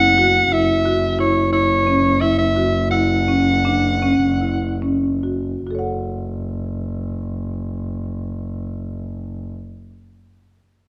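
Urgent yet pensive, this fragment of contemporary chamber music moves in 7/8 at 136-179 BPM in eighths, in F# minor tuned to A4 = 435 Hz, and slows down from 0.5 to 5.7 seconds. A bright, punchy soprano saxophone with vibrato and a smooth top carries the solo melody up front in a pop style until 4.8 seconds. Alongside it, a woody, mid-forward rosewood marimba with medium hard mallets plays arpeggios while a single bowed double bass holds a smooth, even low F# with vibrato, all set in a moderate recital hall reverb.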